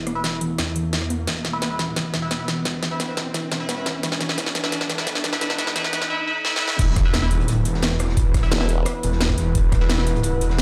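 A straight 4/4 pulse at 174 BPM drives this dark, technical drum and bass passage, cut from a longer piece, with a mechanical, tense mood and tuning set to A4 = 435 Hz. The front-placed drum and bass kit enters at 0.1 s with a cracking snare, metallic hats, rim clicks and crashes, all high-passed and tape-coloured after re-recording in a small room, while a riser, filter sweeps and drum fills build toward the drop at 6.8 s. Underneath, a thick detuned saw bass with chorus and overdrive pumps against the sidechain, a deep, moody ambient pad holds sustained chords in the background with 12-bit sampler grit, and a warbly, dusty pluck spins lo-fi arpeggios with delay until 6.0 s. A nasal, band-passed chord stab with ring modulation, phaser and delay cuts through brightly from 0.2 s to 10.1 s. At the drop an impact lands, a knocking layered electronic kick arrives, and a crunchy, saturated breakbeat kit with a high-tuned snare and rolled-off top sits far back, while a brief formant-sweep wobble bass lunges up front on a low E. 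The mix carries a moderate plate reverb and the sense of a big sound system ringing through a bare room.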